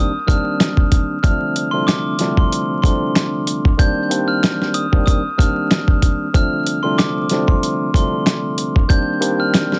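Moody and gritty, this boom-bap hip-hop excerpt cut from a longer piece moves at 94 BPM in 4/4 with a light swing on the sixteenths, settled in C dorian. A tine electric piano carries the accompaniment from the start, sitting up front with a clean, direct tone coloured by cassette tape and plate reverb as the harmony shifts between Cm7 and Dm7/C. Above it, a glockenspiel played with hard plastic mallets states the melody high in its register, its bell-like, sparkling ring close-miked and dry. A dusty soul sampler-style drum kit enters at 0.3 seconds and is the loudest element, compressed and tape-warm, with a thumpy kick, a medium-tuned snare and hi-hat. A very quiet finger snap joins at 0.6 seconds, human and acoustic in a small room, while the dense, heavily limited master carries a light reverb and a layer of vinyl crackle.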